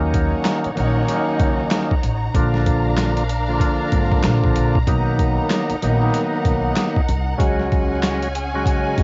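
A reedy tonewheel organ with key click and a slow rotary speaker opens this dark, gritty boom-bap hip-hop excerpt up front, alongside a bowed string section whose smooth, expressive chords carry vibrato and portamento and a woody pizzicato upright bass. A moment later, at 0.1 seconds, a compressed, pitched-down sampler-style kit enters with a thumpy kick, medium-tuned snare, handclaps and hi-hat, swung on the 16ths, while the chords move from Ebm7 through Bb and Bmaj7 to Dbsus4. Cassette tape colours the organ, strings and drums, and the whole piece sits in a lo-fi home recording with vinyl crackle, a muffled top end, light reverb and studio ambience.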